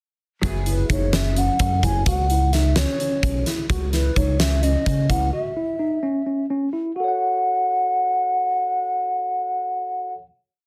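Intricate and tense, this short progressive instrumental piece drives through an uneven 7/8 groove. A huge arena drum kit sits up front with a fat snare, punchy kick and hi-hat in a big room, while fingered electric bass, direct and locked to the kick drum, anchors the low end. A tine electric piano, clean and heard through its built-in speakers, spins an arpeggiated ostinato that carries on to the close. Deep in the background, a dark, compressed hollow-body jazz guitar, double-tracked and fingered, holds quartal chords until 3.7 seconds, while drums and bass drop out shortly after 5 seconds. Up front, a mellow baroque flute with a pure, hollow wooden tone and vibrato states tongued, motif-based song phrases, though it sounds slightly distant. At 7.0 seconds the groove gives way to a final F# minor chord under light reverb, in a dense, heavily limited modern master.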